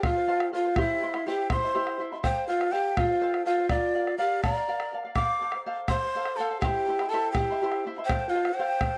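A dark, warm studio sound with a moderate room reverb frames this short, festive and earthy cut from a longer Andean folk piece, moving at 82 BPM in a straight 6/8 counted in dotted quarters. Up front, a large wooden quena carries the melody with a breathy, straight tone, crisp attack and audible chiff, its line enriched by plate reverb and analog delay. Close beside it, a bamboo pan flute plays a second line below, its sound airy and vibrato-tinged with a soft onset, also treated with plate reverb. Further back, a fingerpicked charango adds mellow, shimmering accompaniment on its double strings, some doubled at the octave, while a deep, compressed and saturated bombo anchors the ensemble until 8.9 seconds. The harmony circles around F, moving through C and Bb before landing back on F at 8.1 seconds.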